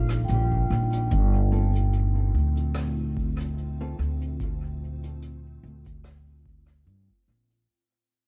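A woody, growly pizzicato upright bass sits up front in this hazy, spacious ambient dub excerpt in G minor at 73 BPM, with a lightly swung 4/4 feel, moving from Ebadd9 to Gm11 and tuned a touch flat to A4 = 435 Hz. A dark, detuned organ-like pad holds sustained chords in the background with ensemble chorus and reverb, a deep, tape-warm electronic kick sits underneath, and distant brushed hi-hat and rim clicks carry dub echo in a small, echo-heavy room. A metallic vibraphone rings out gritty 12-bit arpeggios through analog delay until 1.9 s, a clean, compressed electric guitar adds stabs with dub echo between 1.5 and 4.0 s, and the passage fades out from 1.1 s.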